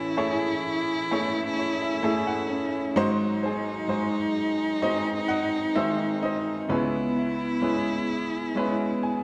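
An upright piano, a cello and an electric guitar open together in this heartbroken, reflective acoustic folk-pop ballad, moving at a slow 64 BPM in 4/4 with a straight feel in C# minor, tuned to A4 = 444 Hz. The piano carries the melody up front with a clear, woody, intimate tone, its short sustain and audible action noise giving it a natural feel, and a slapback echo trails each note. It adds fills from 1.1 to 3.0 seconds and again at 8.6 seconds. The cello sits just as close with a single bowed voice, soft in attack and expressive, its vibrato and portamento colouring a narrow second line. Beneath them, fingered electric guitar arpeggios come through a small old amp, sounding dark, compressed, slightly broken-up and lo-fi under a harmonic tremolo. A wet recital hall reverb surrounds the parts as the harmony moves from Amaj7 to G#7 and settles on C#m7, in a short passage cut from a longer piece.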